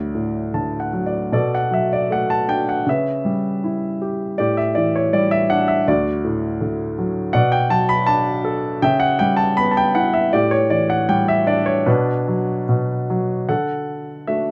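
Reflective and dark, this short lyrical classical excerpt in B minor drifts at a rubato 73-82 BPM in 4/4, with a solo baby grand piano, polished and up front, opening on a brief fill at 0.2 seconds before cycling twice through D, Bm7, C#m7b5 and A7sus4, settling on Bm and turning to D at 13.5 seconds, all captured by close, detailed microphones in light reverb.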